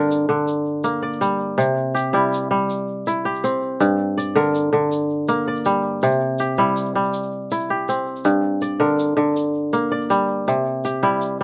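A mellow, ringing kora leads this flowing, hypnotic piece of West African traditional music with crisp fingerpicked arpeggios up front, moving between G minor and C in G dorian at 108 BPM in a straight 12/8, while a grainy, bright tube shaker plays throughout this short cut from a longer outdoor recording with little reverb.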